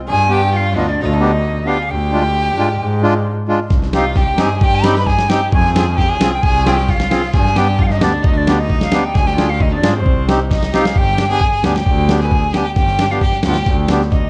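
A pure, vibrato-laced silver concert flute carries the melody in this bittersweet, soulful klezmer excerpt at 132 BPM, over a distant, smooth bowed violin second line, a reedy, mid-forward accordion and a biting, up-front bowed double bass, with a gritty, compressed sampler-style drum kit of thumpy kick and medium-tuned snare entering at 3.7 seconds and playing a fill from 10.5 seconds into a new section at 11.0 seconds, all in a dark production with light reverb.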